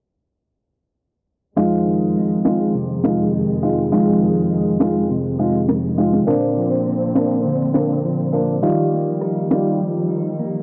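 Tough and bouncy, this dancehall cut sets a boxy, up-front baby grand piano and a bright, twangy clean electric guitar picking arpeggios through lush chorus over dark, woody bowed strings in the background, while a sharp electronic snare and rim click enter at 2.4 seconds, the chords moving from Fm7 to Bbadd9 and Ebadd9 in a small, lightly reverberant room before the piano stops at 9.8 seconds.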